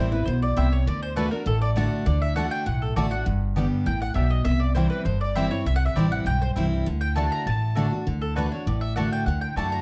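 Lightly reverberant, dark production frames this joyful, virtuosic bluegrass fragment, where a bright picked mandolin carries the melody over a full-bodied jumbo acoustic guitar and a thumpy, woody pizzicato upright bass up front, while a second mandolin adds warm stabs and a clear, airy fiddle in the background plays a second line until 8.0 s, before the lead mandolin takes a solo from 8.1 s.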